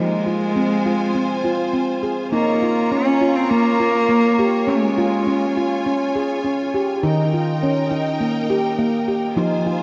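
A dark, warm production sits in a long church reverb that blooms for several seconds, giving this short excerpt from a longer piece a gentle, hypnotic air. It is meditative world music built around tuned percussion, moving at 102 BPM in a straight 4/4 in Bb dorian. Up front, a ringing nitrided-steel handpan plays arpeggios with sharp finger strokes, its mid-forward tone wrapped in shimmer reverb and tape echo. A single bowed cello, nasal and earthy with light vibrato, carries the melody alongside it through the same shimmer and tape echo until it stops at 5.9 seconds. Behind them, a distant, lush studio string section holds biting, intense sustained chords with shimmer reverb. The harmony moves from Fm to Bbm, Db and Eb as the music opens into its second section at 2.3 seconds.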